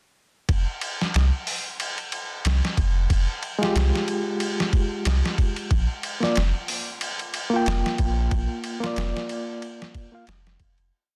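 A dry, dense and heavily limited mix frames this smoky, melancholic trip hop piece, built on a swung groove from a dusty, compressed soul drum kit playing a looped breakbeat with edits, its thumpy kick and medium-tuned snare sitting up front beneath a round, sine-like sub bass carrying a mellow dub-style line. At 3.6 seconds a reedy, overdriven electric piano enters through a combo amp with tremolo, 12-bit sampler grit and tape echo, dropping sparse chord stabs in a spread voicing as the harmony moves from Fmadd9 to Bb. The piece fades out from 7.4 seconds.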